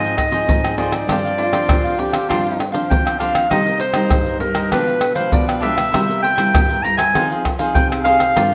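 A straight 4/4 samba-and-choro groove at 99 BPM comes from up-front maracas, pandeiro, tamborim and a tight surdo, played close and dry with hard hands, setting a yearning, nostalgic mood in C minor in this section cut from a longer piece. A roomy, classical-style clarinet carries the melody over crisp picked cavaquinho and a warm, fingerpicked nylon-string guitar with fresh strings, moving from Fm7/Ab through G7sus4 and Cm7 to Fm7. A breathy, whispered tenor saxophone with vibrato adds a brief jazz-style second line from 1.4 to 2.7 seconds, and the sound sits in a wet large studio reverb.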